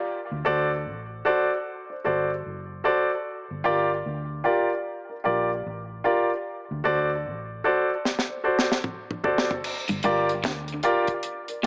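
Up-front grand piano stabs with short sustain and tape echo lead this meditative, spacious dub reggae piece in G minor at 75 BPM, swinging on the 16ths as the chords move between D7 and Gm7. A dark, round, foam-muted fingered electric bass sits low underneath from the start. A deep, dry reggae drum kit with a high-tuned snare, tight kick and rolled-off top enters with a fill at 8.1 seconds, a clean picked electric guitar riff with tape echo joins at 9.9 seconds, and a wet spring reverb and small speaker sound colour the recording.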